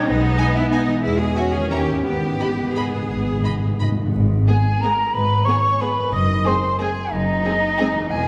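A silver concert flute with a pure, crisp-attacked tone and vibrato carries a distant second line through this festive, elegant orchestral ballroom waltz in G# minor, moving in 3/4 with rubato between 162 and 198 BPM. Close, lush cello and viola sections and an expressive double bass section lay the foundation, while dark French horns hold sustained chords until 4.0 seconds and a bright harp rings out arpeggios in the background. Two violin sections enter at 0.4 seconds, one carrying the melody in the background and the other a smooth-topped second line; articulate timpani struck with hard mallets add a fill from 2.1 seconds, and a wet concert hall reverb surrounds the ensemble.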